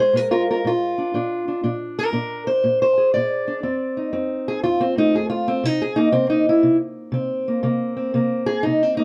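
A fingerpicked steel-string acoustic guitar plays alone and up front from the start, its boxy, parlour-sized tone sitting in a shadowy, warm production with light reverb. This acoustic country blues has a rollicking yet laid-back swing feel, moving through Bb7, F7 at 3.6 seconds and Cm7 at 5.6 seconds. The short excerpt is cut from a longer piece.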